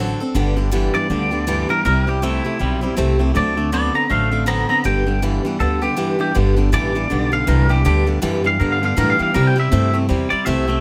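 A bright, full-bodied steel-string acoustic guitar with audible finger squeak and a woody, thumpy gut-string upright bass open this upbeat, rowdy swung rock excerpt in G major at 160 BPM. A compressed, twangy electric guitar riff joins at 0.3 s, and a fingered electric guitar melody dressed in lush chorus and analog delay follows at 0.9 s. A clean electric guitar solo then enters at 6.4 s, all within a dry mix.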